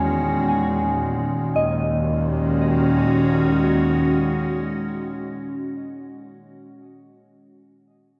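An evolving, detuned wavetable pad sits up front in this spacious, reflective ambient excerpt at 57 BPM in Eb minor, holding slow-attack chords with chorus and its own reverb, and a filter sweep colours it over the opening Emaj7 before the harmony settles on Ebm7 at 1.5 seconds. A soft FM synth bell with a pure, warbling vintage tone plays arpeggios through chorus and analog delay, while a dark, veiled section of bowed double basses con sordino adds a lush low foundation with vibrato until 4.7 seconds. The echo-heavy mix is bathed in a wet spring reverb, with the pad dropping out at 6.5 seconds and the bell ringing on to 8.2 seconds.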